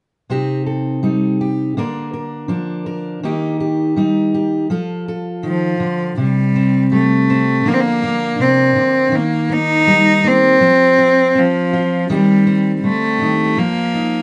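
Acoustic folk in C dorian, this melancholic, intimate excerpt moves at an unhurried 81 BPM in a straight 4/4. A fingerpicked steel-string acoustic guitar opens at 0.3 seconds, its auditorium-bodied tone sitting up front as it lays down the accompaniment through a progression rooted in C minor, B-flat over D, E-flat and F. At 5.5 seconds a single cello enters with the melody, bowed with light vibrato and an airy, earthy edge, placed close and slightly louder than the guitar. The second section, from 6.2 seconds, shifts the harmony toward open fifths and ends on an F7 chord, with both instruments carrying on until the clip stops. A moderate studio ambience gives the pair a natural, intimate space.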